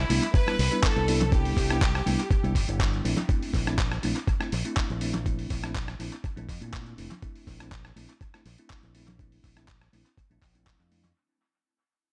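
A gritty, thumpy electronic kick sits up front in this sunny, groovy nu-disco fragment alongside a dusty soul sampler-style kit of handclaps, hi-hat and rim click with dub echo, soft-handed congas in the background, a bright, envelope-filtered fingered bass and a bell-like tine electric piano that both pump against the sidechain, while a biting, intense violin section carries the melody only until 2.8 seconds over a move from Cmaj9 to Bbmaj9#11, and the echo-heavy mix fades out across its full length.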